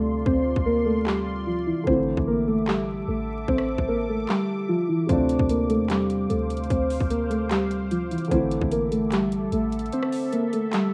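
Trap-style hip hop in a half-time feel, menacing and eerie and cut from a longer piece, where up-front, muted felt-like synth keys with a chorused, dark triangle-and-sawtooth tone carry the melody over a mellow grand piano with audible action noise, a bright, detuned sawtooth pad sustains chords high above, a deep, boomy sine 808 bass anchors the low end, and a gritty 12-bit trap kit with hard-clipped kick, metallic hats, handclaps and rim clicks enters at 0.3 s, its kick dropping out from 4.3 to 5.1 s, within a moderate room reverb, vinyl crackle and a rough demo-like mix.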